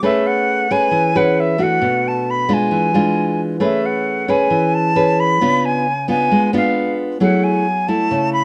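Romantic and sophisticated, this bossa nova excerpt in straight 4/4 pairs an airy, reedy jazz flute carrying the melody with vibrato and a soft attack against a full-bodied, fingerpicked nylon-string guitar whose fresh strings let a little finger squeak through. Both instruments sit up front and play throughout the 8.4 seconds, with the guitar slightly louder than the flute, under a light reverb. The phrase is stated twice, the second time from 3.6 seconds, moving through rich jazz harmony such as Amaj9, E7b9, C#7b9 and F#m9.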